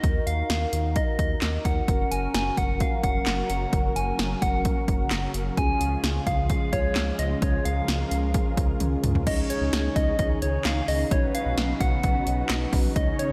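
Synth-pop with a wistful yet bright mood, this excerpt opens with a punchy, overdriven analog drum machine up front, a round, deep analog bass and mellow, brassy synth chords carrying a slapback echo, while a gentle, keys-like FM lead sings the melody in a warbling, vintage tone through chorus and tape echo. A silky string machine slips in behind at 1.9 s with slow-attack ensemble-chorused chords, and a drum fill at 8.8 s leads into a new section at 9.3 s that moves onto suspended and added-ninth harmonies. The whole mix sits in a concert-hall reverb that gives it a big arena sound.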